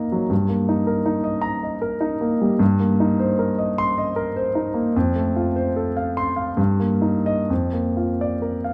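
Classical romantic character piece for solo piano, lyrical and warm in triple metre with a freely flowing rubato. The concert grand sounds up front and warm, with deep bass and short sustain, spanning F2 to C6, set in a moderate recital hall reverb within a dark production. The harmony moves from Eb/G through Cm7/G and F before returning to Eb/G and settling on Bb/F near 7.5 seconds, in this brief fragment cut from a longer piece.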